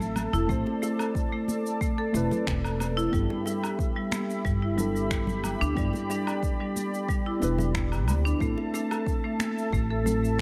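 Organic downtempo with a mystical, earthy mood, cut from a longer piece, where bright, hard-mallet marimba arpeggios with delay weave through muted felt-like synth keys, a smooth detuned analog pad and a woody pizzicato upright bass up front, all three breathing with sidechain pumping, while a deep layered electronic kick enters at 0.5 seconds beneath tape-warm electronic cabasa, woodblock and finger snaps and background congas and bongos, moving from Am to G6 and back in light reverb.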